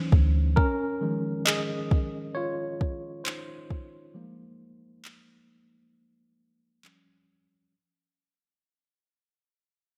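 A swung 67 BPM groove of soft, overdriven electronic kick and handclaps carries this romantic, smooth contemporary R&B excerpt, where a worn, slightly out-of-tune tine electric piano, lightly overdriven and heard through built-in speakers, takes a solo over chords moving from Dmaj9 to Fsus2, while a round, dark 808-style bass note and a barely audible downlifter sound only within the first 0.6 seconds, all set in light reverb and bright 1980s-style digital production as the music fades out.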